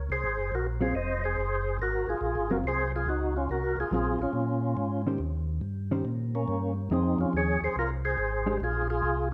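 Jazz with a swinging, bluesy mood, this clip from a longer piece sets a round, dark tonewheel organ bass up front beneath a fat, lightly overdriven percussive organ melody marked by key click, chorus vibrato and a slow rotary speaker. A clean, compressed, fingered hollow-body electric guitar adds accompaniment from 0.8 s over changes moving from Ab13 to Eb, Fm7 and Bb7sus2. A large studio reverb gives the parts a moderate sense of space.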